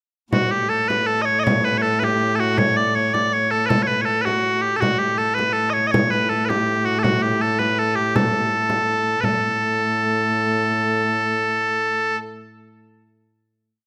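Close, detailed microphones and a moderate recital-hall reverb frame this short, complete medieval dance in 6/8, ancient and rustic in mood. Piercing bagpipes sit up front with a modal melody full of ornaments. Beneath them, a rich, fretted viola da gamba sustains a ringing bowed drone with light vibrato, an airy bow and a boxy tone, while a small frame drum struck with hard hands keeps an evenly spread pattern. The drum stops at 9.4 s, the pipes and drone move to a final note at 9.3 s, and both end at 12.2 s.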